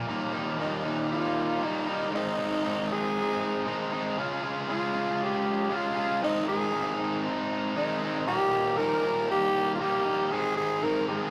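A straight 4/4 rock groove at 117 BPM drives this swaggering, confident cut from a longer piece, set in Eb mixolydian. A cranked stack guitar, bright and overdriven, picked and double-tracked up front, plays the riff from the very start, ranging from Eb2 to Ab4. At 0.6 seconds a growling tenor saxophone joins with the melody, its raspy, gritty tone carrying a light vibrato and a pop-style solo voice, colored by analog delay. The harmony moves from Eb to Ab, then Db, back through Ab to Eb and Ab again, giving the passage a rolling, assertive drive through its single section. Both parts sit at the same level inside moderate studio reverb, and the rough rehearsal-room sound adds a loose, live edge.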